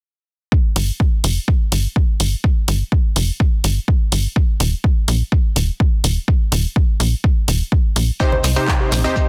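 A straight 4/4 groove at 125 BPM drives this bittersweet, expansive progressive house excerpt, anchored by a punchy, overdriven electronic kick that sits up front from 0.5 seconds. A tight sequencer bass with a nasal sawtooth-and-square bite pumps against the kick, its filter sweeping throughout, while a deep house kit adds handclaps and dark hi-hats with a small-room character. The harmony moves from Fsus2 to Eb5 before landing on C minor at 8.2 seconds, where the arrangement opens up: an airy, detuned supersaw stab pushes forward with a noise layer and evolving filter sweep, and a soft, round pluck traces gentle arpeggios in the background through analog chorus and tape echo. Grainy shekere and compressed, saturated congas played with soft hands fill in the percussion at low level behind them. The sound is dry and dense, with a heavily limited modern master that keeps the kick, bass and stabs close and forceful.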